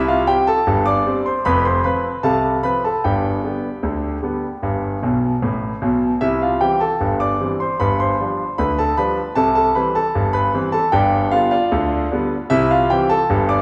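Ragtime piano in a lively, jaunty straight two-beat feel, played by a solo concert grand with a clear, polished tone, deep bass and short sustain, sitting up front across a range from F1 to D6. Its chords move from C to F and G before a brief fill at 5.0 seconds leads back to C, then alternate between G7 and C. A generous reverb with the sound of a church or concert hall surrounds the instrument in this short section cut from a longer piece.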